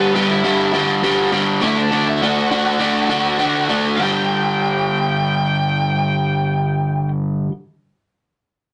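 Rowdy and rebellious, this punk clip from a longer piece charges along at 203 BPM in a straight 4/4, moving from G to D before landing on a G5 chord at 4.0 seconds. A biting, overdriven electric guitar, double-tracked and up front, picks a low riff through 7.5 seconds, while a warm, high-gain distorted lead guitar carries the melody above it until 7.1 seconds. The sound is rough and raw like a rehearsal room, with tube saturation, a dull top end and a moderate small-room reverb.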